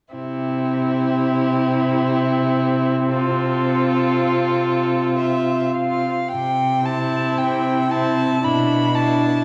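Tender and lyrical, this short passage cut from a longer piece is a slow romantic movement for string quartet in triple metre, played with a flexible, rubato feel. A single violin carries the melody with a focused, vibrato-laden tone and a smooth top, while a second violin sits further back, supplying an even, distant second line. A viola fills in the accompaniment with light vibrato and a smooth, steady sound. Beneath them, the cello holds the bass up front, its intense vibrato giving the low end real weight. The quartet plays together from start to finish, opening on a C chord, moving into a new section at 6.3 seconds and touching an E over B harmony at 8.4 seconds. A reverberant recital hall surrounds the players, and the sound carries the worn, warbling pitch drift of old cassette tape.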